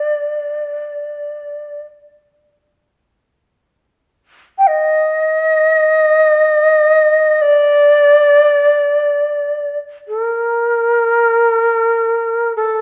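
A moderate recital-hall reverb surrounds this short fragment of Japanese traditional chamber music, giving it the resonance of a church or concert hall. A lone shakuhachi carries the whole passage, sounding alone from 0.0 to 12.8 seconds and sitting up front in the sound. Its end-blown bamboo tone is reedy and airy, with softened, rolled-off highs. The player uses vibrato and tongued attacks, moving within a compact span from A4 to G5. The mood is austere and calm, unfolding as a single unhurried line cut from a longer piece.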